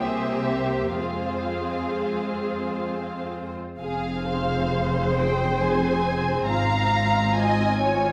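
A muted violin section carries the melody with a veiled, smooth-topped tone and light vibrato, while a second violin section sits lush and up front on the inner line in this tender, rubato slow movement for string orchestra in 3/4, cut from a longer piece. Con sordino violas fill in the accompaniment with soft attacks, and dark-toned cellos join rich double basses to anchor the bass as the harmony moves from C7 to Fm at 1.0 s and to Fm/Ab at 6.5 s. A reverberant recital hall gives the strings a gentle romantic glow.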